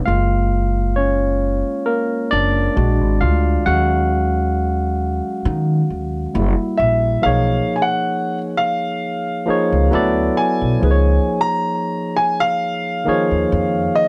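Relaxed and warm, this neo-soul R&B excerpt sets a barky, clean tine electric piano heard through a combo amp over a woody, thumpy pizzicato upright bass on gut strings, with a gently swung feel, before an intimate concert grand with audible action noise and long sustain enters at 6.8 s to carry a high melody, all in a dark production with moderate studio reverb.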